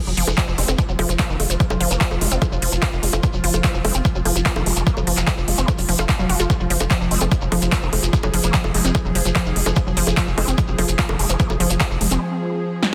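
A dense, heavily limited and fairly dry mix carries this hypnotic, alien psychedelic trance excerpt, in which an overdriven punchy kick and an up-front dance kit of snare, crisp hi-hat, handclaps and bongos drive beneath a tight, sawtooth-edged sequencer bass. A detuned unison pluck riff roughened by 12-bit sampler grit and tape echo pumps against the beat, while a nasal, formant-filtered wobble bass with chorus and delay and a morphing wavetable pad with phaser and reverb sit in the background, and a close, grainy shekere adds acoustic texture. At 12.2 s most parts drop out for a brief break, leaving the pad and kit to ring until 12.9 s.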